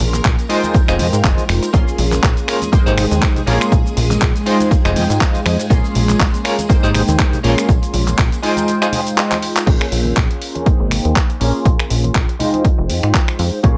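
A sensual, nostalgic filtered disco house excerpt in Bb dorian at 121 BPM with a swung 16th feel opens on a bright, detuned, warbling polysynth comp with chorus and phaser, lush vintage string-machine chords in the background, a dark, clean semi-hollow guitar riff with tremolo, and a plucky sawtooth bass with ring modulation, all four pumping under a low-pass filter, alongside a gritty, compressed soul sampler-style kit of hi-hat, handclaps, finger snaps, cabasa and crash and very quiet, close congas and tambourine, before an overdriven, punchy electronic kick lands up front at 0.2 s; the dry mix cycles through Fm7, Bbm7 and Abmaj7, with a clean guitar fill at 4.7 s and the strings ending at 9.7 s.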